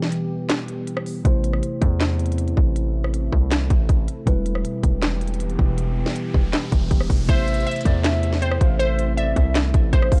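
A half-time trap groove at 159 BPM drives this brief, menacing and melancholic hip hop cut from a longer piece, with an up-front electronic kit of hard-clipped kick, sharp snare, crisp hi-hats, handclaps and rim clicks roughened by vintage 12-bit sampler grit. Over an opening break, a mellow tine electric piano plays clean, direct accompaniment through a low-pass filter, while a deep, moody ambient pad holds sustained chords in the background, its detuned sawtooth voices softened by chorus and its own reverb. At 1.2 seconds a heavy, saturated 808-style bass arrives up front with a fast, aggressive attack and a noise layer, and the harmony moves between E minor and A minor. An electronic riser builds from 5.0 seconds, and at 7.3 seconds a glassy, crystalline wavetable pluck takes the melody with chorus, filter sweep and digital delay, joined by a breathy concert flute with vibrato and rolled-off highs as an expressive second line. 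The production is dark and dry, with little reverb on the whole.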